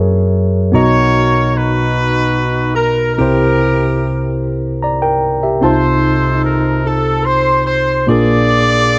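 Gospel in a slow 6/8, reverent yet jubilant, cut from a longer piece and steeped in a dark production with a moderate plate reverb. A worn, slightly out-of-tune tine electric piano, heard through its built-in speakers and placed up front, lays down mellow chords from the start, moving from Gb9 through Bmaj7, C7 and F7/C to Bb7. At 0.7 seconds a jazz-style horn section joins with the melody, its ensemble sound smooth on top and touched with light vibrato.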